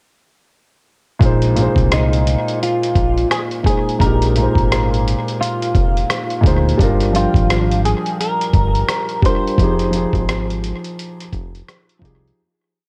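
A laid-back, swung beat of sixteenth-note hi-hats, a thumpy kick and rim clicks from a muffled, pitched-down, sampler-style kit sits up front, while a fat, detuned sawtooth bass plays a sparse, sustained line under soft, felt-muted upright piano chords in spread voicings, repeated like a sampled loop. From 1.9 seconds a clean electric guitar, with chorus and tape echo, plays short motif-based call phrases over the Bb9sus4, Gm7 and Fm9 chords. This melancholic, nostalgic lo-fi hip hop piece has a dry, echo-heavy cassette sound and fades out from 9.6 seconds to its close at 12.4 seconds.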